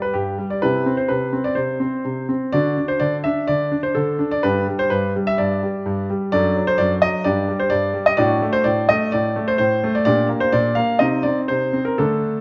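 A smooth, vintage-toned grand piano plays alone and up front through this elegant yet restless fragment of a classical-period sonatina, moving at 127 BPM in 4/4 with a rubato feel. It opens in G major before turning to G minor at 6.3 s, and the harmony later darkens through Gm/Bb at 10.1 s toward a closing Cm9. Close, detailed miking captures the instrument within a moderate recital hall reverb.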